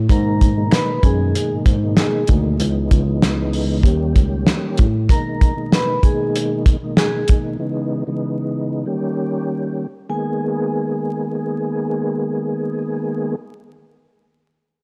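Boom-bap hip-hop in G# harmonic minor at 96 BPM with a swung 16th feel, this moody, dark excerpt cut from a longer piece sets a cloth-damped, thuddy drum kit with a fat, gritty snare and tight kick up front until 7.4 s, a worn, slightly out-of-tune tine electric piano carrying the bass line until 5.1 s, very quiet finger snaps from 0.7 to 2.1 s, a soft, flute-like tonewheel organ with chorus vibrato, slow rotary speaker and cassette tape character, and an airy, ringing vibraphone melody played with soft mallets over G#madd9, C#m9 and D#7 chords, all within a dark production marked by vinyl crackle and small room ambience.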